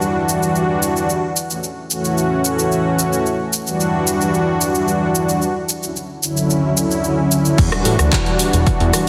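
A smooth, detuned sawtooth pad sits up front with chorus, cassette-tape grit, slapback echo and sidechain pumping, moving through Em9, F#m7 and Dmaj9 over a house kit of handclaps, rim clicks, shaker, crash and tape-softened hats in this sensual, groovy nu-disco cut in E dorian at 111 BPM. At 7.6 s the drop arrives with a punchy electronic kick and a fat, thick sawtooth bass with a filter sweep and sidechain pumping, landing back on Em9. A moderate plate reverb and a heavily compressed, radio-like finish give the short fragment a dense, glossy sheen.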